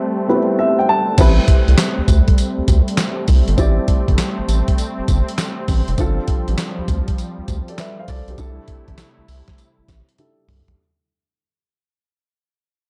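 Punchy and confident, this new jack swing excerpt in A minor moves at 100 BPM with a swung 16th-note feel. It opens on a short break where a dark, intimate baby grand piano with audible action noise plays a fill over a smooth, detuned sawtooth pad treated with chorus. At 1.2 seconds a gritty, compressed sampler-style drum kit (thumpy kick, fat snare, hi-hat, handclaps, tambourine, toms and crash cymbal) arrives up front alongside a round, deep, wave-folded bass as the chords move from Am7 through G7sus4 to C6, the track fades out inside a digital ambience, and a drum fill at 10.2 seconds closes the cut.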